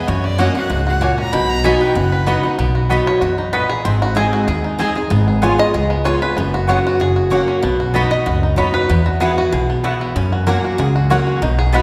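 Joyful, virtuosic bluegrass at 190 BPM in B major, cut from a longer piece, where a biting, close fiddle solos briefly before a twangy, fingerpicked five-string banjo takes the lead from 2.6 seconds, over a full-bodied, up-front picked dreadnought guitar, a woody pizzicato upright bass, and bright double-strung mandolin stabs, all set in the wet reverb of a concert hall.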